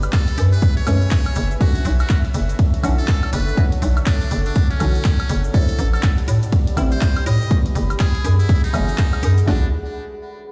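Hypnotic, warm deep house at 122 BPM in B minor with a 16th-note swing, cut from a longer piece and sitting in a drop as minor eleventh chords move from F#m11 through Bm11 and Am11. A punchy, overdriven analog drum machine drives up front with kick, snare and toms, while a second dry, overdriven kit adds handclaps, hi-hat, ride and woodblock; a hollow, bouncy FM bass knocks beneath, and a grainy cabasa sits in the background. A deep, dark detuned pad pumps under the sidechain, filtered dub chord stabs drift through phaser, chorus and delay, and a buzzy, brilliant metal-muted trumpet plays a forceful jazz-style solo with scooped notes and light vibrato, entering at 0.1 seconds, the mix carrying the stone reverb of a bare room played over a big sound system.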